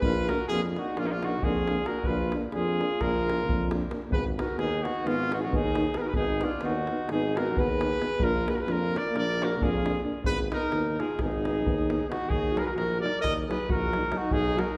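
A fiery, restless Balkan brass band piece in 9/8, cut from a longer piece, opens with the whole ensemble playing together from the start. A clear trumpet carries the melody up front, while a smooth-topped, mellow alto saxophone plays a second line beneath it. Two euphoniums with light vibrato supply the accompaniment: one has a soft attack and sits in the background, and the other is very quiet. A warm tuba with vibrato holds down the bass, and a deep davul, heard close by, carries the percussion. The brass play in the classical style and sound set back in a wet scoring-stage reverb, which gives the trumpet, the quieter euphonium and the tuba a roomy, distant quality. At 12.3 seconds the music moves into a new section before the clip ends at 14.8 seconds.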